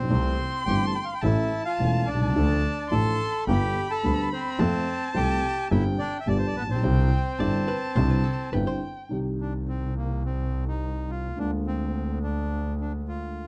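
Passionate and melancholic, this rubato tango excerpt at 106 BPM in 4/4 sets a reedy, bright, close-miked bandoneon melody over a boxy concert grand piano with deep bass and a focused, bowed double bass sitting up front with vibrato. A dark violin adds a bowed second line full of vibrato and expressive portamento, joined briefly from 7.4 seconds by a clean, compressed, picked hollow-body electric archtop guitar, and both fall away at 9.1 seconds as the music turns from C major to C minor. The production is dark, warm and lightly reverberant, cut from a longer piece.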